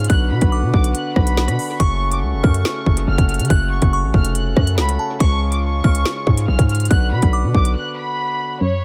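Tense and ominous, this half-time drill fragment sets a biting, close violin section carrying the melody through dub echo over reedy, breathing harmonium chords and a delicate, tinkling synth bell line in the background, while an up-front drum kit with a hard-clipped kick, woody snare and crisp hats plays alongside a punchy, heavy 808-style bass until both drop out at 7.8 seconds for a break that ends on a brief, warbling lo-fi pluck at 8.6 seconds, all steeped in echo-heavy digital ambience.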